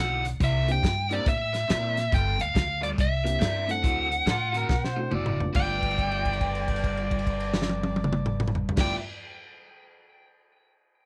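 A biting, overdriven lead guitar carries the melody up front in this soulful, rollicking electric blues shuffle at 140 BPM in G mixolydian, cut from a longer piece. Beneath it, a raw garage guitar plays a riff through overdrive and phaser, a growly pizzicato upright bass with steel strings anchors the low end, and a soul drum kit with fat snare, tight kick and dark cymbals sounds in a pumping room. A boxy, mellow upright piano sits in the background over C9, G9 and D9 changes; a gritty, amplified harmonica with tongue slaps and scooped notes enters at 4.3 seconds, and a drum fill starting at 4.7 seconds leads at 5.6 seconds into a G13 chord and a held note lasting to 8.7 seconds, with studio reverb around the band.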